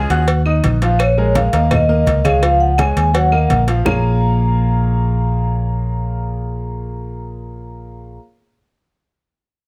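A straight 4/4 salsa groove at 168 BPM drives this fiery, danceable excerpt in Bb minor. Low-tuned, bright congas sit in the background beside tight, high-tuned cowbell and bongos and distant, woody claves, all dropping out at 3.9 s, while a dark, round, punchy fingered electric bass stays up front and a clear, polished upright piano with long sustain comps beneath. From 1.0 s a mellow, ringing vibraphone played with soft mallets and a medium motor vibrato carries the melody over chords moving through Ebm, Bbm7, Eb5 and Db, in a close, dry recording.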